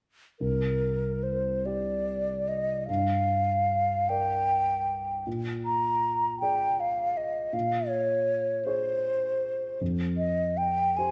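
Mysterious and hazy, this impressionist classical duo in C minor drifts in a rubato 6/8 at 48-55 BPM, with an airy, hollow concert flute singing the melody with vibrato and tongued notes over a dark, mellow grand piano accompaniment rich in deep bass, both up front from 0.4 to 11.1 seconds as chords such as Csus2, Gm7, Bb7 and Fsus2 pass through a moderate scoring-stage reverb.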